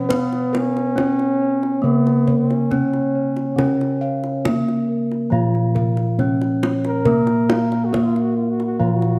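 A straight 4/4 pulse at 69 BPM carries this hypnotic, stately 9.2-second fragment of Javanese gamelan, cut from a longer piece and set in Bb pelog. A bronze metallophone struck with a wooden mallet leads the melody with an airy ring, while a second metallophone, also wooden-mallet played, supplies accompaniment in a lower register. Higher up, a mellow, soft metallophone played with padded disc mallets spins arpeggios, joined by very quiet bossed gongs. Dark, smooth bossed gongs with a round, beating tone anchor the bass, and a tight, band-limited kendang struck with hard hands keeps the percussion going from 0.1 seconds. A clear trombone in classical style weaves a second line, heard through close, detailed microphones and light reverb.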